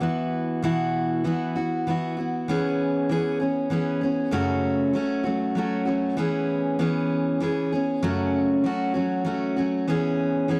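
Warm and hopeful, this brief rock fragment at 97 BPM in 3/4 and E major features a lone picked steel-string acoustic guitar. It sounds full-bodied and jumbo, sits up front with audible finger squeak and light reverb in a dry, close 1970s-style studio sound, and moves from a Bsus4 opening into alternating E6 and F#m chords from 2.5 seconds to the cut at 10.6 seconds.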